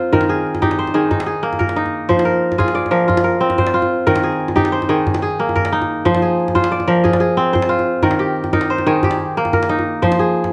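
A ringing, crisp kora sits up front, its fingerpicked arpeggios ranging from Eb3 to D5 over a reflective, hypnotic West African groove in 12/8 at 121 BPM, with the harmony alternating between Eb and Fm in F dorian. Beneath it, a medium-tuned djembe played with hard hands adds a vintage, band-limited pulse from 0.1 seconds, sitting well behind the kora in level. Close, detailed microphones and light reverb frame this short excerpt, which is cut from a longer piece and moves into a second section at 6.1 seconds.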